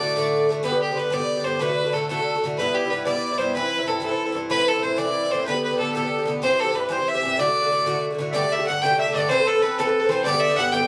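Rollicking and bright, this short excerpt of a Celtic folk jig in 6/8 moves with a straight, buoyant lilt. An intense fiddle, played by a single player, carries the melody up front, its bowed line touched with light vibrato. An Irish bouzouki, also up front, plays the accompaniment with a metallic, double-strung ring and a warm, picked body. Behind them a reedy accordion, close-miked and dry with slow beating in its tone, adds a full second line in the background. At 8.4 s a mellow, round mandolin joins on a second line, its picked double strings thickening the texture as the tune turns toward a new phrase over a Dsus4 chord. The band sounds as if it is playing live in one room, wrapped in a wet studio ambience.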